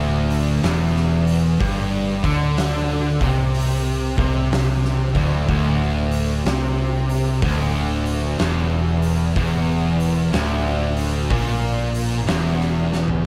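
A swung 62 BPM pulse in 4/4 carries this brooding, heavy stoner and doom metal excerpt, where a bright, double-tracked overdriven guitar riff rides over a D9sus4 chord, backed by two thick, fuzz-distorted guitars set in the background and a dark, round hollow-body bass with overdrive, while an oversized low-tuned acoustic kit with a boomy kick, fat snare, hi-hat and toms enters at 0.3 seconds in a gritty, pumping big room and closes with a drum fill at 12.8 seconds, everything framed by light small-room reverb.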